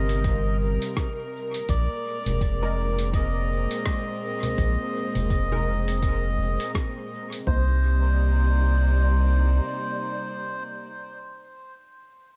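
A hazy, spacious mix sits in light reverb, with a round analog bass up front and everything else set back around it. This ambient dub excerpt moves at 83 BPM in 4/4 with a swung sixteenth feel in C minor, shifting from Cm7 to Bb7sus4 and returning to Cm7 as a second section begins at 7.5 seconds. A reedy, breathy melodica carries a short melody through dub echo over a dark, bowed string section whose soft-attack chords carry a gritty 12-bit sampler edge, while the deep bass is thickened by tube saturation. The drums pair a deep, tape-warm electronic kick with a muffled, pitched-down sampler kit of congas, hi-hat and rim click, overdriven and sent through dub echo, and both drum parts stop by 7.6 seconds. From 2.6 seconds a detuned sawtooth chord stab with a filtered pluck, chorus and dub echo sits quietly in the background.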